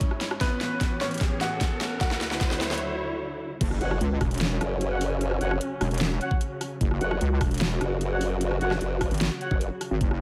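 Chaotic and aggressive, this heavy wobble dubstep excerpt in half-time opens with a build-up where a bright, worn grand piano melody carries 12-bit sampler grit and delay under a filter sweep, over lush, bowed strings with sidechain pumping, a drum fill and a background riser. At 3.6 seconds the drop hits with an impact, as a saturated, detuned square-wave wobble bass takes over alongside the knocking, overdriven kick and a kit with a huge snare, joined moments later by a formant-sweep wobble bass with chorus. Distant, mellow brass stabs with delay float above, all set in light digital ambience.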